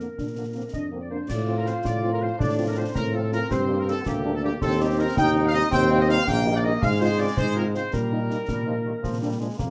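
Rousing and festive, this fragment of a military-style march for wind band moves at 108 BPM in a straight 6/8, counted in dotted quarters, tuned to A4 = 439 Hz and settling into Eb major from 5.7 s. A distant, roomy trumpet section carries the melody while a woodwind section with light vibrato sings a second line, and a mellow euphonium with a smooth top adds its own second line only until 1.3 s. A vintage-toned French horn section sits in the background with accompaniment. Beneath it, a warm tuba with vibrato stands up front on the bass as the loudest part of the band. At 1.3 s a clear, tight trombone section enters with sustained chords, as the harmony moves from Bb through F/A, Gm and Cm/Eb to Eb, Fm/Ab, Eb/Bb and back to Bb. Concert snare drum, concert bass drum and clash cymbals sound close and dry, with dark cymbals, while a moderate large studio reverb lends the room its depth.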